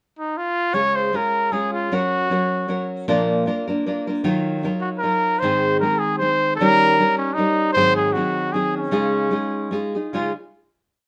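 A clear, smooth-topped trumpet leads this short, complete mariachi piece, sounding up front with a classical poise as it states a motif-based melody built from call-like phrases, entering at 0.2 seconds. A nylon-string guitar joins at 0.7 seconds, also up front, its fresh strings giving a warm acoustic tone as it moves between fingerpicked patterns and folk strumming on open chord shapes, with a touch of finger squeak audible. The mood is proud and festive, set in a lilting triple metre with a light swing and a rubato push and pull. The harmony travels from Db through Gb, Bb and Ebmadd9 to Ab, Eb7 and Ab7 before resolving on Dbadd9. A moderate studio reverb lends a natural room glow, and the piece closes on a final chord that rings to 11.1 seconds.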